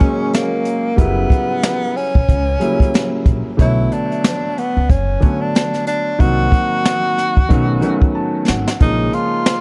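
A brushed drum kit sets a relaxed, swung 92 BPM groove in 4/4, its high-tuned snare and boomy kick sitting up front in this cool jazz-hop piece cut from a longer work. A concert grand piano carries the harmony in F# major, moving from F#add9 through F#7b9, Bm9, Cm7b5 and B9 to A#m7, with audible action noise and a deep low register. Pizzicato upright bass joins at 1.0 seconds, its gut strings giving a woody, thumpy tone. Over this, a breathy tenor saxophone takes the solo melody in a jazz style, with soft attacks, scooped notes and a whispered vibrato, carried by an analog delay. The piano adds a fill at 7.8 seconds and the drums follow with one at 8.2, all within a dark, warm production and a small room ambience.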